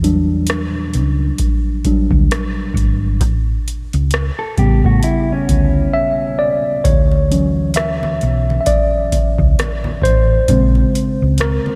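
A worn, slightly out-of-tune tine electric piano sits up front and carries this late-night, sultry neo-soul and R&B excerpt, playing as the featured voice across its full 11.8 seconds over chords moving from Em9 to A7, then Dmaj9 and A#m7. The tempo is a slow 66 BPM in 4/4 with a swung sixteenth-note feel, and a dark, round hollow-body short-scale electric bass, fingered and amped, anchors the low end. A booming analog drum machine, also up front, supplies a deep kick, metallic hi-hats and rim clicks with a tape-like grain from being re-recorded in a small room, and it drops out briefly between 5.9 and 6.9 seconds. A mellow, compressed electric guitar adds a short second line with tape echo from 4.4 to 6.6 seconds. Low-tuned, ringing congas with a saturated edge enter at 6.9 seconds and sit in the background, while light reverb gives the whole mix a gentle sense of space.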